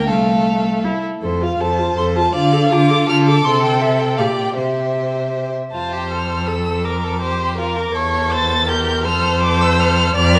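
Heard through a moderate recital-hall reverb with a small-room ambience, this spirited, cheerful classical-period string quartet passage, cut from a longer piece, sets a warm, expressive first violin with vibrato and portamento on the melody high above a bright, distant second violin, a clear, close viola accompaniment and an up-front, focused cello bass, all bowed by single players through two sections that turn at 5.7 seconds.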